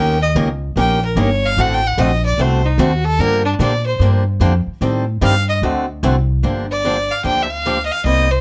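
Virtuosic and bittersweet, this short cut from a longer piece of acoustic string swing in the gypsy-jazz manner rides a swung 4/4 pulse. A single bowed violin carries the melody, playing a solo from the start until 6.4 seconds, its earthy, slightly nasal tone marked by a biting attack, an airy bow and light vibrato. A picked swing-style acoustic guitar supplies bright, boxy accompaniment through a minor progression that moves from Eb7 and D7b9 toward Gm7, then through Am7b5 and D7 before settling back on Gm7 as a new section begins. Underneath, an upright bass with gut strings is plucked with a dark, thumpy, woody sound. The three players sit close and up front in a dry, detailed recording that leaves each string texture clearly audible.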